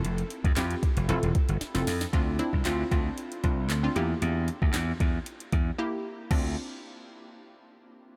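A punchy, bright slap bass anchors this short dance-pop excerpt, sitting up front and pumping against the sidechain as it moves between E1 and F2. Set at 115 BPM in a straight 4/4 and in D minor, the music feels energetic and confident, opening on a drop with an Fmaj7 chord before moving through Dm7 and Edim and returning to Dm7 at 6.3 s. An analog pluck carries the accompaniment from Bb3 to A4, its detuned sawtooth and square-wave tone layered with noise, shaped by a filter sweep, a fast attack and a decaying tail, and thickened with chorus. The electronic drum kit has a soft kick, a sharp snare, metallic hats, handclaps and a crash cymbal, with a drum fill from 1.6 to 2.1 s and a break from 5.8 to 6.3 s. The whole mix sits in light reverb and a digital ambience, and the bass, pluck and drums all stop by 6.5 s, cut from a longer piece.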